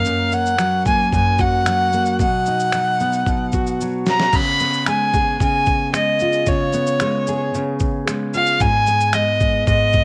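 A straight, steady pulse in four drives this carefree, sunny acoustic pop clip, cut from a longer piece. A gritty, compressed sampler-style drum kit comes in at 0.1 seconds with a thumpy kick, a medium-tuned snare, finger snaps, shaker and crash cymbal, all carrying a dusty, tape-warm character. Underneath, a full-bodied dreadnought acoustic guitar is fingerpicked up front, moving from F# to B before a drum fill at 3.8 seconds leads into a new section built on C#7 and then G#m. Over this, a single bowed violin carries the melody with a rich, smooth, even tone, vibrato and a smooth top, sitting prominently in the mix. Light reverb gives the whole performance the feel of a small room.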